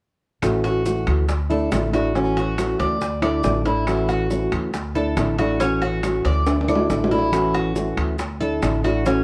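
Worn, warbly cassette tape with light reverb colours this relaxed, danceable Cuban son and guajira clip, where an up-front, thumb-plucked nylon-string guitar with audible finger squeak and a dark, thumpy gut-string upright bass alternate between A6 and Dsus2, a metallic, double-strung Cuban tres picks arpeggios from 0.6 seconds, round low-tuned bongos, woody claves and grainy maracas sit in the background, and ringing metal-shell timbales round out the percussion, with a drum fill arriving from 6.5 to 7.3 seconds.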